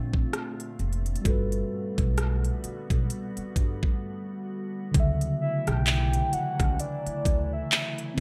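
Smooth and tender, this short slice of contemporary R&B moves at a slow 65 BPM in 4/4 with a lightly swung sixteenth-note feel, centered on D major. A mellow tine electric piano carries the accompaniment, while a glassy, ethereal FM pad with slow attack, ensemble chorus and its own reverb holds sustained chords. Down low, a woody, growly pizzicato upright bass anchors the harmony, and an electronic trap kit sits up front with a knocking kick, crisp hats, handclaps and rim clicks, all given an overdriven edge. The chords shift from Bbmaj9 to Gmaj9, then a brief break at 4.0 seconds leads into a new section at 4.9 seconds, where the harmony settles on Dmaj9. At 5.4 seconds a soft, round octave-layered synth lead enters with the melody, its dark sub-octave tone colored by chorus, phaser and vibrato. The overall sound is dry and close.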